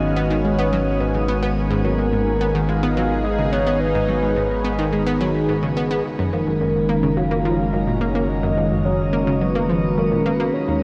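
A detuned, sawtooth analog pluck leads the ear from 0.2 seconds, bright and up front, its riff sitting low to mid range with chorus and analog delay trailing each fast, decaying note. This is ambient, sequencer-driven space music with a cosmic, expansive mood, cut from a longer piece in a straight 4/4. Alongside it, a sweeping resonant pad holds sustained chords that move from G#madd9 to F#maj7 at 6.0 seconds, its full-bodied sawtooth and sine layers evolving through a slow filter swell with chorus. A soft octave-layered synth lead carries the melody in a dark, round triangle tone with a wave-folded edge, vibrato, chorus and analog delay, while a deep sine sub bass sustains underneath. A very quiet bubbling texture of random, resonant filter steps flickers high above until 6.1 seconds. The whole recording is bathed in a long, wet shimmer reverb and carries the worn, warbling pitch drift of old cassette tape.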